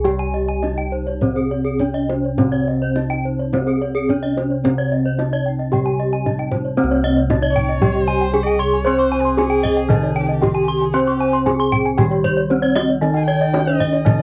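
Hypnotic and shimmering, this excerpt of Balinese gamelan moves at 103 to 115 BPM in a straight 4/4, centred on C in a pelog scale. Bronze metallophones carry the melody and a lower accompaniment. Two higher metallophone lines spin arpeggios, and horn-mallet strokes give off a bright, ringing edge, while the paired tuning of several metallophones produces shimmering beats. Round, beating bossed gongs anchor the bass, and a tight, band-limited kendang played with soft hands supplies the percussion, sounding slightly vintage. When the second section begins at 6.8 seconds, a dark, woody erhu joins at 7.5 seconds as a bowed second line, close and singular, gliding with portamento and vibrato from a soft attack. Light reverb surrounds the ensemble.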